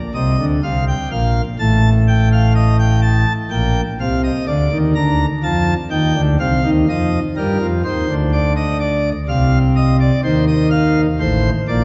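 A pipe organ's principal chorus, full-bodied and up front in a baroque voicing, plays alone from 0.1 to 11.8 seconds, carrying a baroque-style three-part fugue at a stately 62 BPM in 4/4, its range spanning A1 to Bb5. The mood is contemplative and solemn, with harmony that begins on Bb and moves through G minor and C minor. A long church reverb surrounds the organ, while vinyl crackle and a dulled top end give this brief cut from a longer piece an aged quality.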